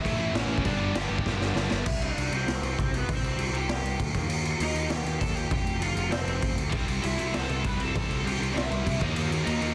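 A raw garage drum kit sits up front in this upbeat, rowdy punk rock excerpt at 197 BPM, its boomy kick, gritty saturation and rolled-off top sounding like a small room, with a drum fill at 1.2 seconds before the groove drops into half time at 1.9 seconds. A growly, fuzz-laden picked bass and a lead guitar through a small cranked amp, overdriven with delay, carry the piece throughout. Three distorted rhythm guitars play the riff at the start, fall away around 1.9 seconds and return at 6.7 seconds: a bright, double-tracked high-gain guitar and a dark, sludgy overdriven one in the background, plus a very quiet tight guitar, all inside a dense, heavily limited modern master with little reverb.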